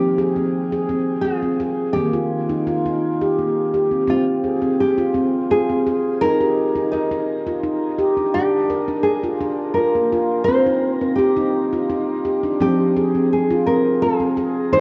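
A gentle, hypnotic stretch of meditative world music in 3/4, cut from a longer piece, where a ringing stainless-steel handpan played with soft fingertips spins mellow arpeggios under a dark, fingerpicked nylon-string guitar melody, complete with the occasional finger squeak. Both sit up front and are bathed in shimmer reverb, while the handpan also trails off into a diffuse ambient delay, and the whole is set in a wet recital hall with the worn, warbly pitch drift of old cassette tape. After the opening Fm and Eb chords, a new section begins at 4.1 s and moves through Bb and Cm before settling back on Fm at 12.6 s.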